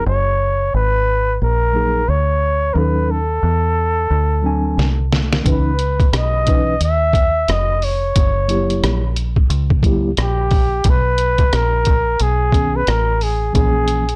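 Cool, mellow jazz-hop cut from a longer piece, where a breathy, whispered flugelhorn with soft-attack vibrato carries an intimate solo melody over a clean tine electric piano played through its built-in speakers and a dark, round, foam-muted fingered electric bass, until a muffled, pitched-down sampler-style trip hop kit with a thumpy kick arrives through a drum fill at 4.8 seconds, all captured in a dry, gritty hardware recording with transformer saturation.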